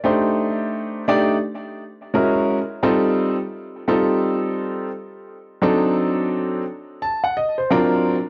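A smoky, vintage haze hangs over this short cut from a longer hip hop piece, captured as a home recording on cassette in a small room with moderate reverb. A solo concert grand piano sits up front, its tone clear and smooth with a deep bass, colored by cassette tape and tape echo. The tempo is a relaxed 86 BPM in 4/4, with a 61% swing on the sixteenths giving the phrasing a loose, nocturnal sway. Working in C dorian, the piano moves from Cm69 through F#9 and F9 before settling onto D7b9 and a closing D7alt, spanning F#3 to A5. The piano plays alone from 0.0 to 8.1 seconds, its jazzy harmony and lo-fi character suiting a late-night mood.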